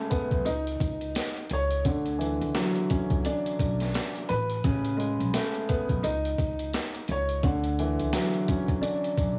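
A warm upright piano opens this short boom-bap hip-hop excerpt, its intimate, up-front tone carrying audible action noise and a filtered cassette-tape color as it plays the accompaniment from the very start. At 86 BPM in 4/4 with a 60% swing on the sixteenths, the mood is nostalgic, settled in D lydian over chords that move from C#sus2 to Dmaj9, Amaj9 and back again. A sampler-style drum kit enters at 0.1 seconds with a thumpy kick, a high-tuned snare and hi-hat, sounding compressed and gritty, re-recorded in a large room and sitting up front with its own cassette coloring. A pizzicato upright bass joins at 0.3 seconds, dark and woody on steel strings, holding a low range between A1 and D2. Light studio reverb and small-room ambience give the whole fragment a homespun, cassette-recorded intimacy.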